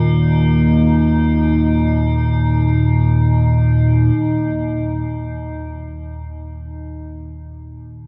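Unfolding in free time, this ominous, cavernous dark ambient drone, cut from a longer piece, places an up-front, warbling analog drone of vintage sawtooth and pulse-wave tones with chorus beneath an eerie, metallic FM texture with ring modulation and its own reverb that stops at 4.2 seconds, set in a vast, echoing cathedral space with a faint mains hum.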